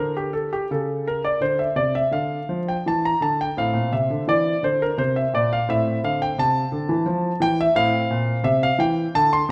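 Grave and flowing, this short passage from a longer baroque-style suite movement in D minor unfolds in 3/4 at about 85 BPM with a supple, rubato feel. A solo grand piano carries it throughout, warm and intimate with deep bass, sitting up front, with audible action noise and a natural tone. A wet recital hall reverb surrounds it as the harmony moves from an opening single D5 into D minor, then through a rootless A minor colour and B-flat before settling on F over A.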